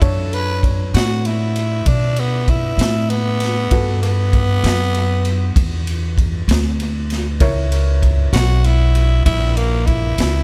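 A growling tenor saxophone carries a solo through this smoky, mournful slow blues in a straight 12/8, its raspy, breathy tone softened by a gentle attack and trailed by analog delay. Underneath, a woody, slightly detuned upright piano adds short-sustained accompaniment, also touched with analog delay, sitting lower in the balance. The plucked upright bass is thumpy and up front, its steel strings giving a warm, woody foundation. A raw garage drum kit of kick, snare and ride sounds saturated and gritty, with a punchy kick, a medium-tuned snare, a rolled-off top and a pumping small-room character. The whole brief fragment, cut from a longer piece, moves through Bm7, Gmaj7 and A#dim in a small room with an echo-heavy mix.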